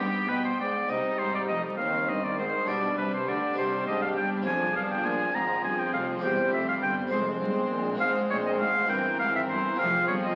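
A clear oboe leads this stormy, driving baroque-style concerto movement in C minor, sitting up front with a soft attack and light vibrato as it carries the melody between G4 and Bb5. Behind it, a bowed chamber violin section also plays the melody with a focused, vibrato-rich tone, while a second violin line enters at 0.9 s, smooth and even in the background. A distant viola section fills the accompaniment, a dark, intimate cello section and an expressive double bass section anchor the bass, and a close-miked, dry Flemish-style harpsichord with two sets of strings adds plucked harmony across a broad span. At 68 BPM in 6/8, the harmony moves from G to C minor and on toward F minor, passing through a C7/G before settling on F minor near the end of this fragment cut from a longer piece. The whole ensemble rings in a wet recital hall and comes through the crackle of a very old 78 rpm record.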